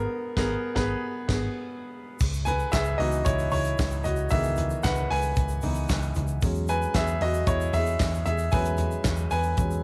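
A clear, up-front baby grand piano leads this bittersweet, driving piano pop excerpt at 114 BPM in 4/4, joining the band for an opening accent before taking a solo from 2.2 seconds over chords moving from G#madd9 to C#m7 and then E6 at 6.4 seconds. Beneath it, a dark, round, foam-muted picked electric bass holds the low end, while a studio drum kit with bright cymbals, a tight kick, snare, toms, hi-hat, crash and handclaps drives the groove, with the piano and drums carrying a cassette-tape colour. A grainy, compressed tube shaker enters in the background at 2.2 seconds, and the whole recording has the light reverb and homespun character of a cassette home recording.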